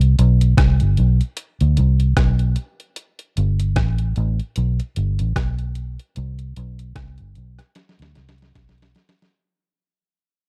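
A dry, close recording in a 1970s studio style carries this sweet, tender lovers rock reggae piece at 75 BPM in 4/4, with a gentle swing on the sixteenths. Up front, a dark, round, foam-muted electric bass plays low through an amp, while a detuned 8-bit drum machine adds a thumpy kick, a medium-tuned snare, hi-hat and rim click, its sampler-style sound tape-warm and re-recorded in a large room. The whole piece is a fade-out cut from a longer work, and the drums close it with a fill from 7.8 seconds.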